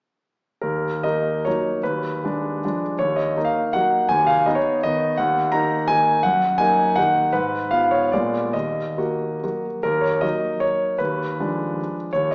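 A romantic classical dance in triple time, this short excerpt from a longer piece sets a solo grand piano in Eb minor, its dotted rhythms shaping a wistful, nostalgic mood. The tempo moves freely with rubato, ranging from 131 to 182 BPM, so the dance lilts and lingers instead of holding a strict pulse. The piano sounds clear, intimate and natural, placed up front with audible action noise, and it spans from Eb2 to Bb5 between 0.6 and 12.3 seconds. Harmonies circle around Eb minor, passing through diminished colours over an Eb bass and a Db9, then reaching a Bb7b9 at 8.1 seconds before settling home at 8.5 seconds. The opening phrase begins again at 9.9 seconds, just before the cut. A wet recital hall reverb surrounds the instrument, though the overall sound has a small-speaker quality.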